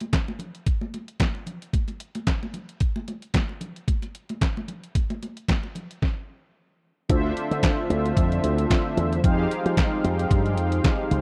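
A swung 112 BPM groove from a detuned 8-bit drum machine, with thumpy kick, medium-tuned snare, hi-hat and handclaps, opens this slick, late-night early-eighties boogie funk excerpt in D minor alongside damped, high-tuned congas with a thick-skinned vintage tone, the two playing together until a stop at 6.0 seconds. At 7.1 seconds the band arrives on Dm9 before moving to Fm9: a growly, punchy slap bass pushed through an envelope filter sits up front beside round, dark synth brass with chorus and vibrato, while a bold, evolving analog pad with a soft attack fills the background. The dry, close studio sound keeps the tape-warmed drums and the bass immediate and present.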